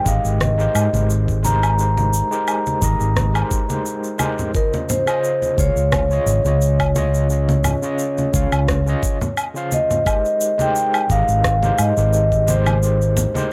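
Warm and blissful, this sunset chillout excerpt drifts at 87 BPM in Ab major with a gentle swing, its harmony moving from Abmaj9 to Dbmaj9 at 4.5 seconds and back to Abmaj9 at 10.1 seconds. A mellow, ringing vibraphone played with soft mallets carries the melody through an analog delay, while a barky, overdriven tine electric piano with medium tremolo supplies the accompaniment and a dark, round fretless electric bass with tube saturation sits up front. Underneath, a thumpy, tape-toned electronic kick, a layered electronic shaker, rim click and woodblock, and low-tuned, thick-skinned congas keep the groove, all framed by digital ambience in a dry, gritty hardware recording with transformer saturation.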